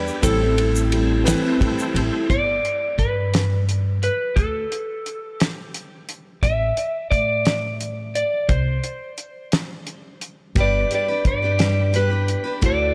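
Wistful and reflective, this slow folk rock and heartland rock excerpt moves at 58 BPM in a straight 6/8. An electric slide guitar carries the melody with a slightly broken-up tone and analog delay, over a dry, dark drum kit with a fat snare and tight kick, and a woody, thumpy upright bass, all up front in light reverb. A bright, full-bodied picked acoustic guitar also sits up front, while a smooth tonewheel organ, with chorus vibrato and fast rotary speaker, rests in the background beside a mellow, vintage baby grand piano, and a close, grainy egg shaker joins them at the opening; the guitar and organ drop out at 2.3 seconds and return at 10.6 seconds over a G chord.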